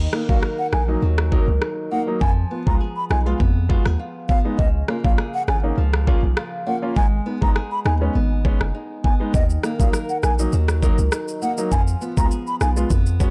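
A straight 4/4 dancehall groove at 101 BPM, driven by an electronic island pop kit with a knocking kick, rim click and shaker up front beside a deep, boomy 808-style bass, carries this sultry, hypnotic Eb minor excerpt, where a fingerpicked flamenco guitar plays arpeggios with audible finger squeak, a clear, intimate grand piano with audible action noise pumps under sidechain, and an airy wooden baroque flute sings the melody with vibrato and tape echo from 0.3 seconds, framed by a dark, warm studio reverb.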